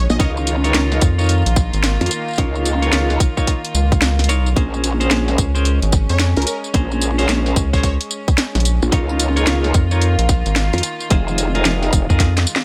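A funky, gritty glitch hop groove in Bb minor at 110 BPM with a swung 16th feel opens on a soft, floating bowed string section carrying sustained chords with vintage 12-bit sampler grit and sidechain pumping, alongside a rubbery, hollow square bass and a brief flash of a plucky, detuned sawtooth lead. A tight, up-front electronic kick and a layered kit with cracking snare, hi-hat and tambourine drive the beat, while a growling, wobbling bass with chorus and tube saturation joins the low end and a bright, twangy clean electric guitar adds stabs with tremolo and tape echo over chords moving from Db69 to Bbm9 and Fm7. The catchy lead, set back in the mix with phaser and tape echo, returns from 6.1 to 7.9 seconds, and a drum fill arrives at 12.2 seconds in this dry cut from a longer piece.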